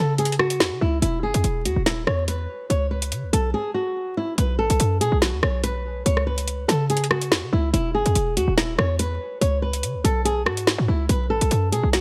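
A light reverb and a bed of vinyl crackle frame this dark, menacing half-time drill excerpt, which opens with a fresh-stringed acoustic flamenco guitar, fingerpicked with audible finger squeak and softened by a low-pass filter, over a punchy, tight 808-style bass whose sine tone carries a noise layer, with a fast attack and a decaying sound. An electronic drill kit enters at 0.2 seconds with a woody snare, metallic hi-hats and rim clicks, its tape-warm character sitting up front alongside the bass and guitar. A brief break at 3.5 seconds leads into a second section from 4.4 seconds, where the chords pass through a stretch with none before returning to E.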